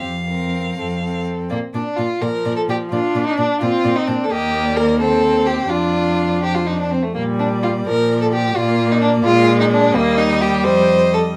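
Lilting in 6/8 at 85 dotted-quarter beats per minute with a rubato give, this quick classical-period movement for string quartet is cheerful and spirited in Bb major. The first violin carries the melody between C5 and F5 with a warm, smooth and even bowed tone, sitting close yet softer in the balance than the second violin. That second violin's rich, distant-sounding line between A3 and C5 still stands up front as the loudest voice, and it drops out at 11.2 seconds, just before the others. The viola fills in the accompaniment with a focused sound and a smooth top, while the cello anchors the bass from Eb2 to Bb2, up front and expressive with vibrato and portamento. Opening on Fsus4, the harmony settles on Bb at 1.5 seconds, moves through Eb, Cm/Eb and Dm/F, returns to Bb, and reaches Eb at 9.9 seconds and F5 at 10.7 seconds. Light reverb gives the quartet a modest sense of space in this short passage cut from a longer piece.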